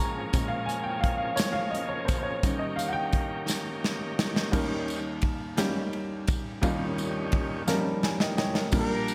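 Bright 1980s-style digital production with lush hall reverb and a faint mains hum frames this soulful, reverent slow gospel passage at 57 BPM in 6/8, cut from a longer piece, where a woody, intimate upright piano with audible action noise takes a solo over Bbm7 and Eb7 before a shouting, lightly overdriven tonewheel organ on slow rotary speaker solos from 4.5 seconds. Meanwhile a polished studio drum kit with gated reverb keeps time, adding fills toward the end of each section, and a jingly tambourine sits in the background, until a clear, tight horn section with light vibrato enters at 8.7 seconds.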